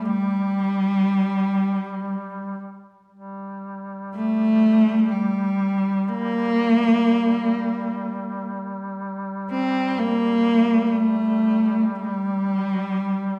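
A dark, bowed cello sits up front and close, a single player carrying the melody between G3 and C4 with expressive vibrato and portamento. This is a Caucasian folk lament in G minor, solemn and full of longing, moving in free time. Beneath it, a warm duduk holds a drone on G3, far quieter and set back in the room, its soft attack, scooped notes and vibrato giving it a distant, folk-style presence. Both instruments sound together from 0.0 to 13.4 seconds, and the music shifts into a new section at 3.1 seconds. A wet recital-hall reverb, with a decay of 1.7 seconds, wraps the performance in the resonance of a church or concert hall, and the recording is cut from a longer piece.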